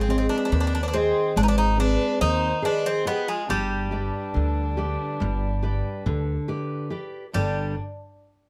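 Melancholic and reflective, this short Greek folk passage from a longer piece moves in 9/8 at 141 BPM with a straight feel, its harmony shifting from Ab to G. A bright, metallic bouzouki carries the melody up front with its double strings, while a dark, woody bowed violin with vibrato traces a second line, and a full-bodied jumbo steel-string guitar picks the accompaniment with audible finger squeak over a pizzicato upright bass. All four play together through 7.7 seconds in a moderate studio room, with a dark, warm production and a brief turn toward a new section at 7.3 seconds on a G5 chord.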